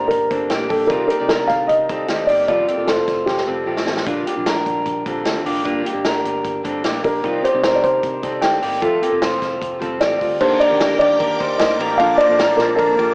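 A woody, slightly detuned upright piano carries the melody up front in this breezy, nostalgic jangly indie pop excerpt, pausing after 3.8 seconds during a drum fill and returning at 7.0 seconds over a full-bodied fingerpicked steel-string acoustic guitar, twangy, slightly broken-up electric guitar arpeggios, a round muted bass in the background and a vintage drum kit with a punchy kick and rolled-off top, the piano, guitars and drums all carrying cassette tape colour, until at 10.4 seconds a very quiet reedy electric piano and a swirling string machine with ensemble chorus, phaser and tape colour join as the chords shift to Ebmaj7 and Bbmaj7, all set in a lush hall reverb with a lo-fi home-cassette, small-speaker sound.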